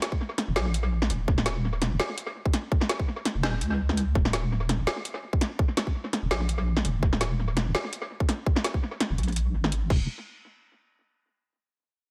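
A deep, soft wobble bass runs through this dark, tense clip of half-time drum and bass, its triangle- and sine-like tone sitting up front with a fast attack, long sustain, firm compression and a chorus shimmer as it moves between Eb1 and Db2 from 0.5 seconds onward. Alongside it, a tight electronic kick enters at 0.1 seconds, layered and produced with a small-room character. The drum kit starts the piece at 0.0 seconds, bringing a woody snare, metallic hi-hats and crash cymbal touches, all fed through an analog delay. At 167 BPM in 4/4 with a light 16th-note swing, the half-time feel gives the groove a heavy, brooding pull. The mix is echo-heavy with light reverb, keeping the drums and bass close and present, and the passage is cut from a longer piece.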